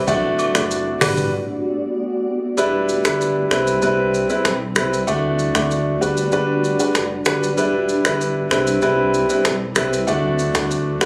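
A cloudy, detuned granular pad with its own reverb and sidechain pumping sits in the background over a round, sine-like sub bass as this breezy, romantic afrobeats excerpt opens at 96 BPM, soon joined up front by a brilliant grand piano with audible action noise and a booming, tape-warm analog drum machine of deep kick, metallic hats, snaps, rim clicks, shaker and toms. Close agogo bells sound briefly between 0.4 and 1.2 seconds, and a break follows at 1.3 seconds before the music settles into a cycle of D, Gmaj7, Em7 and Cmaj7 chords. The whole excerpt carries the light club reverb of a phone recording made in the room.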